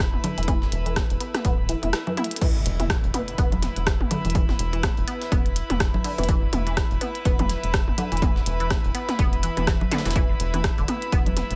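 Quirky and hypnotic, this excerpt of swung 124 BPM minimal techno rides a punchy, tape-warm electronic kick up front, a rubbery square bass that pumps with the sidechain, clicky hats and rim clicks from a minimal kit, a gritty, overdriven breakbeat kit sitting in the background, layered electronic toms and congas with tape echo, and a juicy, squelchy blip pluck riff drenched in phaser and dub echo. A reedy, gut-string chamber section plays throughout, and a very quiet bubbling filter texture ends at 2.4 s, where a drum fill gives way to the drop. A faint electronic impact lands between 2.5 and 4.3 s.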